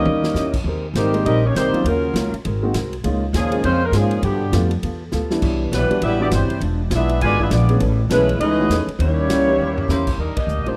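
Big band swing at a brisk 201 BPM, this brassy, energetic snippet from a longer piece features a mellow, vibrato-laden saxophone section carrying the melody up front over a background trombone section, an intimate baby grand piano with audible action noise, a boxy fingerpicked archtop guitar, a woody, growly pizzicato upright bass and a punchy, polished drum kit with fills at 5.1 and 9.6 seconds, the latter leading to a band accent at 10.3 seconds, all captured in a dry, close 1970s-style studio sound as the chords move through rich extended harmonies from Eb7b9 to a closing Ebmaj7.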